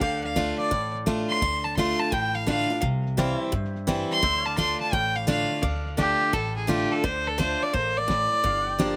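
Swung eighth notes in a loping 4/4 carry this short excerpt of honky-tonk and classic country, and its mood is heartbroken and lonesome. A clear, earthy bowed fiddle sits up front and plays the melody as a solo throughout, touched with light vibrato. Beside it, a bright, boxy parlour acoustic guitar picks the accompaniment, while an upright bass with gut strings gives a woody, thumpy pizzicato bottom. A cloth-damped drum kit thuds along with a fat snare, tight kick, hi-hat and dark crash cymbal, its top end rolled off. In the background, a clean electric pedal steel guitar holds sustained chords with slide, volume swells and a lush chorus, as the harmony moves from D minor to C, back to D minor and, at 8.4 seconds, onto G minor seventh. The sound is dry and close, recorded outdoors with little reverb.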